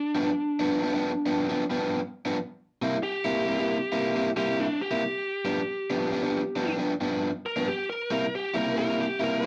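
A swung 91 BPM groove in 4/4 sets a laid-back, gritty blues feel for this short cut from a longer piece. An overdriven electric guitar plays the riff across a range of G2 to E4, picked, compressed and up front in the mix. Over it, a biting lead guitar takes a solo from the very start, its bright, overdriven line moving between D4 and Bb4. The harmony swings between G7 and C7, landing on C7 at 2.4 seconds and again at 7.7 seconds. The sound is a rough rehearsal-room recording with a moderate small-room reverb that gives the two guitars a raw, close presence.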